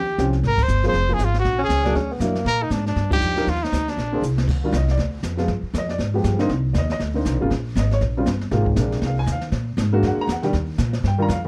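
A swung 4/4 groove from woody pizzicato upright bass and a brushed kit with dark cymbals and a boomy kick carries this relaxed small-group swing-and-bop piece, cut from a longer performance. A clear, punchy trumpet states the melody up front until 4.2 s, where a drum fill arrives; meanwhile a mellow, distant alto saxophone adds a brief subtone line from 1.6 s, and an intimate baby grand piano with audible action noise comps through rich extended chords. Band accents punctuate the opening, and light reverb frames a dark, warm production.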